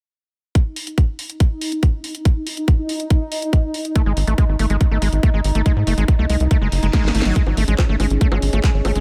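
A screaming, squelchy acid line cuts through this intense psychedelic trance passage at 141 BPM in a straight 4/4, arriving at 4.0 seconds with resonant sawtooth filter sweeps, gritty distortion, chorus, delay and sidechain pumping. From 0.6 seconds a tight, layered electronic kick sits up front, joined by a garage drum kit of cracking snare, warm hi-hats, handclaps and bongos, both carrying a small-room character. Beneath them a mellow, bubbling texture of random resonant filter steps holds sustained chords, with chorus, built-in reverb and sidechain pumping. A punchy, driving sequencer bass of plucked sawtooth and square tones enters just after the acid line. A background reverse cymbal and a drum fill lead into a new section at 7.4 seconds, where a dark, warbling, lo-fi pad with a nostalgic, detuned, wave-folded tone drifts in the background with chorus and reverb. The whole excerpt, tuned to A4 = 442 Hz and cut from a longer piece, sits in a digital ambience.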